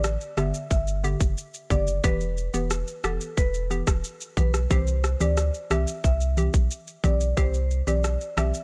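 A dry clip of sultry, tough dancehall at 90 BPM in straight 4/4, moving from G to Em to C. Tight electronic drums with kick, rim click and shaker carry a gritty vintage sampler edge, sitting up front beside a deep, round sine sub bass, while a hollow, bouncy square-wave pluck with chorus adds a warbling, detuned accompaniment. From 0.4 seconds a woody, airy marimba played with medium mallets carries the melody high above.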